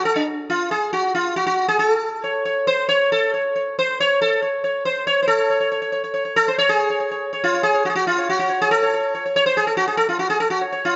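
A moderate recital-hall reverb surrounds this devotional, meditative Indian classical passage, cut from a longer piece, with a softened top end that rolls off above 7.7 kHz. A solo acoustic sitar sits up front, its plectrum-plucked tone round and buzzing, with shimmering sympathetic strings ringing between D4 and C#5. The pace gradually speeds up throughout, and the music moves into a new section at 5.3 seconds.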